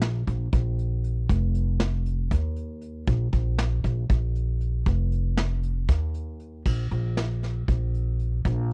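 Upright bass and a vintage brush drum kit start together, driving a progressive instrumental passage in 7/8 at 235 BPM counted in eighths, with a straight feel. The pizzicato upright bass has a woody, steel-strung tone and sits up front in its low register. The brushed kit sounds acoustic and mid-forward, with a medium-tuned snare, a punchy kick, hi-hat and crash cymbal, all in a small room with a rolled-off top. The mood is driving and intricate, and the music moves into a new section at 6.7 seconds before the clip ends at 8.7 seconds. The recording is dry and close, in the manner of a 1970s-style studio.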